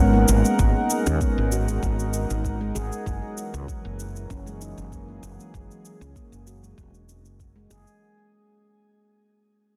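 Earthy and mystical, this organic downtempo fragment at 97 BPM in 4/4 sets ringing, meditative handpan arpeggios with delay and shimmer reverb over a smooth, detuned sawtooth pad with chorus, sidechain pumping and shimmer reverb, a growly, round fretless electric bass sitting up front, a soft overdriven electronic kick entering at 0.6 seconds and a layered overdriven shaker, all moving from G#m9 to F#9 within a dense, heavily limited master that fades out across its 8 seconds.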